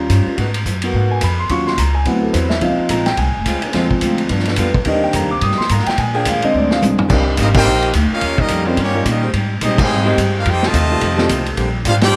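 A polished baby grand piano opens this swinging, sultry big band swing passage, carrying the spotlight over woody pizzicato upright bass, a gritty, saturated vintage drum kit with dark cymbals and a punchy kick, and a bright saxophone section holding soft-edged sustained chords in the background. A very quiet picked steel-string acoustic guitar joins the accompaniment at 2.6 s. A drum fill at 6.5 s leads into the next section, where the horns arrive in full at 7.4 s. There, a brilliant trumpet section takes the melody with light vibrato while a warm trombone section supplies a second line. Band accents punctuate this closing stretch, with the drums placed up front and a moderate large studio reverb surrounding the ensemble.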